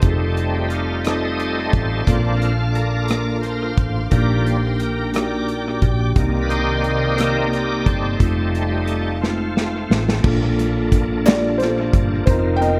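An echo-heavy, lightly reverberant mix carries this jubilant, soulful slow gospel in 6/8 at 59 BPM in Bb major, where a bright, shouting tonewheel organ with fast rotary speaker, overdrive and chorus vibrato solos over a mellow tine electric piano with dub echo, a round, punchy hollow-body electric bass, an up-front, dark-toned drum kit also washed in dub echo, and bowed strings in the background that stop at 10.2 s as a drum fill ends, before a soft, felt-muted upright piano takes the melody at 11.3 s alongside a very quiet, crisp group handclap.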